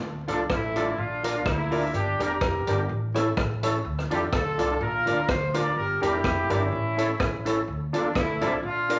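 A swung, driving ska groove in 4/4 opens this short excerpt from a longer piece, its mischievous energy carried by a vintage drum kit of hi-hat, punchy kick and rim click that sits up front with a rolled-off top. A woody, thumpy pizzicato upright bass starts alone at the very beginning, and the rest of the band joins at 0.3 seconds. A horn section carries the melody with light vibrato and a roomy, distant ensemble sound, while a dark, clean semi-hollow electric guitar fills in the accompaniment. An overdriven tonewheel organ adds gritty, thick stabs with audible key click, chorus vibrato and a slow rotary speaker. The harmony cycles through Dm, Bb, Gm and A in a minor-key loop, all set in a large studio reverb with a layer of vinyl crackle that lends the recording an aged character.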